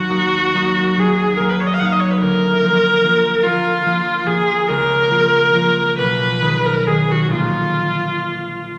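A rubato 6/8 lilt carries this solemn, melancholic fragment of a romantic classical duo, where a single bowed viola sings the smooth, rich, vibrato-laden melody up front while a concert harp beneath it supplies a mellow, ringing fingerpicked accompaniment, both bathed in the lingering reverb of a spacious scoring stage.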